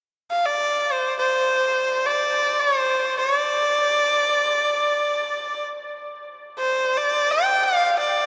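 Wistful and tender, this brief fragment of Chinese traditional music unfolds in free time in the D yu mode. A single erhu carries the melody from 0.3 s to 8.3 s, moving between C5 and G5 with a nasal, earthy voice and an airy bow. The player colors the line with light vibrato and portamento, and the instrument sits close and up front. A heavy cathedral reverb with a 6.6-second decay surrounds it, placing the solo in a vast, echoing space. At 6.6 s the music shifts into a new passage before the fragment ends.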